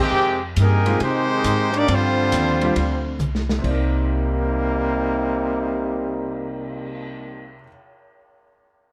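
A mellow, up-front brass sound in a moderate club reverb opens this excerpt of swinging big band jazz in C minor at 137 BPM, where a trumpet section with light vibrato carries the melody until 3.2 s over a soft-attack trombone second line and woody pizzicato upright bass, joined by a muffled, lo-fi vintage drum kit with a punchy kick and a drum fill at 3.2 s, and a clear, intimate upright piano with audible action noise sitting in the background as the chords move from Fm9 through G7sus4 to Cm9.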